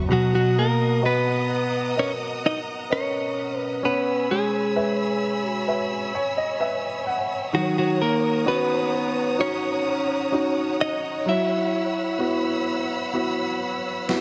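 A slow, straight 4/4 pop ballad at 64 BPM in B major, this emotional, hopeful passage moves through Bmaj7, C#m7, D#m7 and F#7sus4 as a baby grand piano with analog delay carries the accompaniment, adding a fill from 5.7 to 7.5 seconds, beneath distant, lush bowed strings holding sustained chords with vibrato and portamento. Up front, a bright, clean, direct-recorded electric guitar picks the melody through its own analog delay, while a deep, tape-warm electronic snare drum lands only at 14.1 seconds. Light reverb colours the echo-heavy mix in this excerpt cut from a longer piece.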